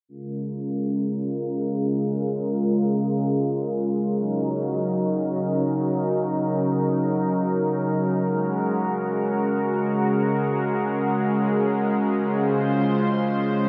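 A thick, detuned sawtooth pad opens this moody, nocturnal synthwave fragment in free time and Bb minor (tuned to A4 = 441 Hz), holding sustained chords from Bbm7 through Ebm7 and Gbadd9 to Dbmaj7 up front with chorus and a gritty vintage 12-bit sampler edge, while a filter sweep runs across its full 13.7 seconds inside a wet, lush hall reverb.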